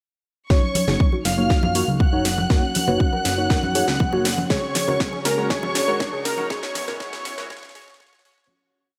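Uplifting and expansive, this short progressive house piece is one continuous build from 0.5 seconds, with filter sweeps running across the whole track. A thick, bold unison lead carries a repeating riff melody with vibrato, doubled an octave higher by a rich, intimate studio violin section played sul tasto. Beneath them, a soft, round pluck repeats a dark sixteenth-note riff over a pedal note, and a glossy, retro chorused polysynth adds phaser-tinged dotted-rhythm chord stabs. A smooth, warbling analog pad holds very quiet sustained chords, while a fat analog bass drives a dotted-rhythm line. The punchy electronic kick sits up front in a four-on-the-floor pattern alongside a house drum kit with a cracking snare and hi-hats, ringing congas and bongos loop in the background, and a faint riser enters at 4.0 seconds before the track fades out from 5.8 seconds.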